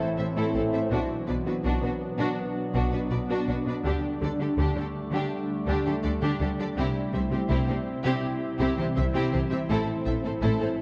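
A rich double bass section anchors this relentless, vast fragment of a hybrid orchestral and electronic film score, entering at 0.2 s with smooth, evenly bowed low notes and light vibrato, alongside a distant cello section that carries the bass line from the very start. Set at 82 BPM in straight 4/4 and in B phrygian, the cue moves through Am, Bm, Dsus4 and C before returning to Am near 9.7 s. Above the low strings, a lush violin section carries an expressive second line with a soft attack, while violas supply smooth accompaniment in the background. A glassy FM pad with ensemble chorus and built-in reverb sustains ethereal chords, and very quiet, mellow French horns and tight, bright trombones hold their own sustained harmonies. A juicy, squelchy blip pluck adds resonant, detuned sawtooth arpeggios treated with phaser and delay. The whole passage sits in a dark production with a concert hall reverb that gives the orchestra a spacious sense of depth.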